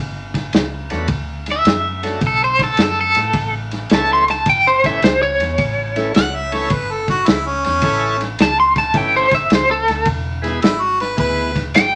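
A swung 107 BPM shuffle in 4/4 drives this soulful, gritty electric blues in A mixolydian, where a muffled, lo-fi vintage drum kit with dark cymbals and a round, foam-muted fingered bass sit beneath a shouting, lightly overdriven tonewheel organ with key click and slow rotary speaker, while an up-front, twangy guitar at the edge of break-up carries the tremolo-laced melody and a clear harmonica with light vibrato and scooped notes enters as a second line at 6.2 seconds, inside a wet small room.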